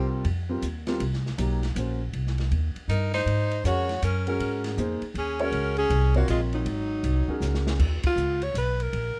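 A brief flicker of both saxophones over the piano and upright bass opens this hypnotic, searching modal jazz excerpt, a 3/4 swing at 159 BPM that is cut from a longer piece. The bass sits up front with a woody, thumpy gut-string pizzicato, while the concert grand lays down a natural accompaniment with deep low notes, moving from F9sus4 to Ab9sus4. From 2.9 seconds the clear alto saxophone carries the melody with a soft attack and vibrato, joined by the punchy tenor saxophone on a bright, forceful second line. The drum kit, entering at 0.2 seconds, sounds dark and smooth in a small room, with a boomy kick, a medium-tuned snare, hi-hat, ride and crash, and a rolled-off top. A drum fill leads into a new section on Eb7sus2 at 7.8 seconds, where the band hits an accent and the alto, bass and drums carry on after the piano and tenor have dropped out, all under a light reverb.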